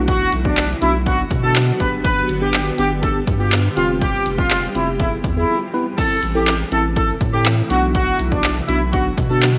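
A punchy analog drum machine drives a straight 4/4 dance-pop groove at 122 BPM, its kick, hi-hat, handclaps and crash cymbal sitting up front with the sound of a large room, while a jingly, close tambourine stays in the background. In A minor, tuned to A4 = 444 Hz, a thick saturated sub bass, a worn, slightly out-of-tune tine electric piano with phaser, and a cloudy, evolving granular pad in the background all pump against the kick, moving through chords from Bm and G to Fsus2, E, Am and back to Bm. Over this a mellow horn section with vibrato and tape echo carries the melody from 0.1 seconds, giving this bittersweet yet confident drop a loose, distant, roomy lead.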